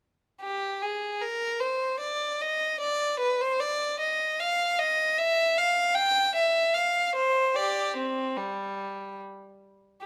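Close, detailed microphones place a single violin up front in a moderate recital hall, whose reverb of about 1.4 seconds gives the sound a gentle bloom. This is a baroque-style suite movement for unaccompanied violin, flowing yet grave in mood, moving in 3/4 at around 75 BPM with a rubato feel and tuned to A4 = 441 Hz. The lone bowed violin plays from 0.4 to 10.1 seconds, covering a range from G3 to G5. Its tone is rich and focused, shaded with vibrato. The passage is cut from a longer piece, so it captures just one stretch of the movement's unfolding line.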